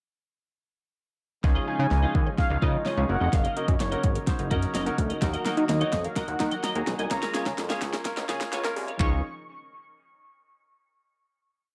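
Carefree and euphoric, this short dance-pop piece in Db major runs at 127 BPM in a straight 4/4, tuned slightly low to A4 = 438 Hz, and is built as a single build-up from 1.4 to 9.0 seconds that resolves onto a final Dbadd9 chord. Up front, a layered deep house kit with a deep kick, fat snare, metallic hats and handclaps plays a syncopated pop beat with a drum fill running through the build, while a glossy, retro chorused synth bass, blending pulse and sawtooth tones, pumps against the kick with a syncopated line full of chromatic approach notes. A clear concert grand piano adds short, closely voiced syncopated chords that also pump, and a bright, twangy twelve-string electric guitar with ensemble chorus picks a choppy, compressed funk-style riff. From 1.7 seconds a velvety, full-bodied synth lead sings motif-based call phrases with vibrato, chorus and dub echo. Underneath, a very quiet, thick pipe organ holds romantic sustained chords and a lush, punchy unison pluck traces falling sixteenth-note arpeggios, all inside a dark, filtered production with light digital ambience, as a filter sweep runs through the build and the chords move from Dbadd9 through Gb6, Ebm and Bbm7/Db.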